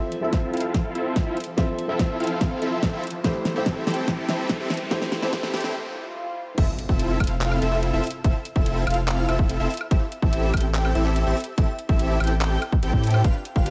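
Future bass in a half-time feel, euphoric and lush, where a soft felt-muted upright piano with audible action noise, a very quiet shimmering ambient pad, and huge detuned supersaw chords under a low-pass filter sweep build over Fmaj7 and Am7, joined by a hard-clipped electronic kick, a pop drum kit with a fat snare, metallic hats, handclaps and woodblock, and a riser and swell in the background. At 5.7 seconds a brief break arrives, and at 6.6 seconds the drop lands with an impact, the piano and pad fall away, and a saturated, deep sub bass and an airy, dreamy arpeggiated lead with chorus and phaser enter. Sidechain pumping drives the supersaws, piano, lead and bass, while cassette tape colour on the chords and light digital ambience round out the mix.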